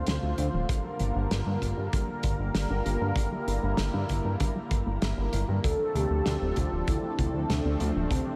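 A fat, detuned sawtooth bass sits up front in this nocturnal, cinematic synthwave excerpt at 97 BPM, pumping beneath a smooth analog pad that holds sustained chords from Dm7 to Gm7 with chorus and shimmer reverb. A very quiet, punchy unison pluck runs arpeggios, while a loose indie kit of hi-hat and medium-tuned snare with a rolled-off top is joined by a tight acoustic kick at 0.7 seconds. At 5.6 seconds a velvety, wave-folded lead enters with vibrato, chorus and tape echo as the harmony returns to Dm7, the whole mix soaked in a dreamy cathedral reverb.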